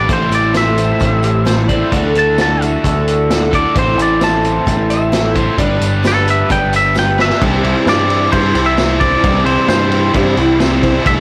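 Wistful and dusty, this folk rock and heartland rock excerpt opens with a clean, twangy, compressed electric guitar soloing through analog delay over a shimmering, octave-doubled twelve-string acoustic with subtle chorus, a crunchy double-tracked overdriven guitar riff in the background, and a very quiet, reedy tonewheel organ with key click and rotary speaker. A round, punchy picked bass and an up-front vintage drum kit with soft clipping on the kick anchor the groove, joined by a faint jingly tambourine, while a dark slide lap steel adds brief second lines, first at 1.2 seconds. A drum fill at 7.0 seconds leads into a new section at 7.4 seconds, and the whole recording sounds blown-out and overdriven with light reverb.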